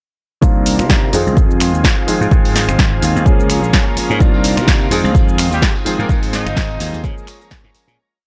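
Filtered disco house with a nostalgic, sensual groove, where an up-front four-on-the-floor electronic kick and a punchy analog drum machine's snaps, shaker, hats and backbeat drive a growly, tube-saturated slap bass line, held piano chords with syncopated pushes carrying phaser and 12-bit grit, a lush string-machine pad with ensemble chorus, and clean sixteenths strumming from a direct-recorded electric guitar, everything but the kick pumping under a filter sweep in a dry room, while a background tambourine joins at 4.2 seconds and a clear horn section adds short phrases with light vibrato from 5.5 seconds as the piece fades out.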